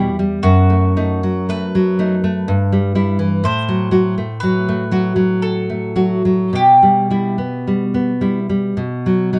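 A romantic duo for mandolin and classical guitar, this short passage cut from a longer piece moves in a slow, rubato 3/4 at roughly 51-63 BPM in E minor, with a melancholic, elegiac mood. The mandolin carries the melody from the start until 8.7 seconds, its picked double strings sounding bright and woody within a narrow range from F#4 to C5. The nylon-string guitar provides fingerpicked accompaniment through to 9.4 seconds, full-bodied and deep, sitting up front and a little louder than the mandolin as it spans from E2 up to F#4. The harmony passes through B7/F#, Em/G, F#dim/A and Em/B before settling on a bare B5 at 8.8 seconds. Close, detailed microphones and a light reverb give the pair an intimate, clear presence.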